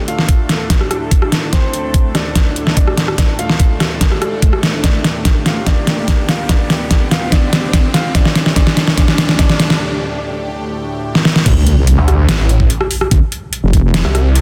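Aggressive and menacing, this heavy wobble dubstep clip opens with a lush, detuned supersaw pad pumping through a phaser, a warm grand piano melody trailing dub echo, an up-front, overdriven kit of deep snare and metallic hats, and an up-front knocking kick, joined a second in by a background riser, all building toward a break at 9.8 seconds, before the drop at 11.5 seconds unleashes a saturated, chorused wobble bass, followed half a second later by a snarling, growling distorted saw bass in a dense, heavily limited mix.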